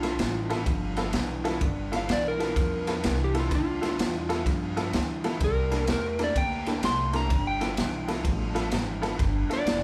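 A swung shuffle at 127 BPM in 4/4 drives this rollicking, soulful electric blues in G mixolydian, cut from a longer piece, where a slightly broken-up slide guitar carries the melody as a solo across the full 9.8 seconds over chords moving from G13 to C13 at 5.4 seconds and back to G13 at 7.3. Beneath it, a detuned, jangly honky-tonk upright piano comps until 9.6 seconds, a twangy, picked electric guitar through a small old amp plays the riff, and a woody, growly pizzicato upright bass holds the low end. The raw garage drum kit sits up front with a boomy kick, dark ride cymbal, gritty saturation and a pumping small-room sound, all captured as a band playing live in one room with light reverb.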